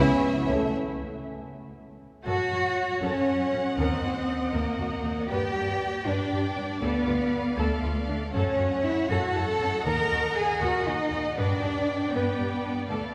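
Up-front, smooth cellos anchor this heroic, epic orchestral film-score excerpt in F# phrygian at 79 BPM in 6/8, with lush strings and warm trombones holding brief opening chords until 0.7 s, before a break to 2.3 s, while a distant, focused violin melody, background second violins, intense violas, very quiet roomy French horns and clear double basses carry on through a long, wet church reverb.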